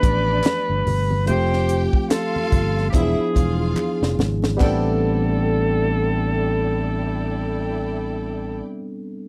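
Smooth and silky, this short excerpt of lush 1970s-style soul in A minor moves at a relaxed, swung 72 BPM, with a bright, punchy alto saxophone singing the melody up front over a clear, bowed string section, a barky tine electric piano that rings on alone after 8.6 seconds, a dark, round fingered bass, and a tight funk drum kit with a high-tuned snare whose fill from 3.8 seconds leads into the Am11 chord at 4.6 seconds, shortly before the drums stop, while crisp handclaps and very quiet congas sit in the background, all captured in a dry, close studio sound.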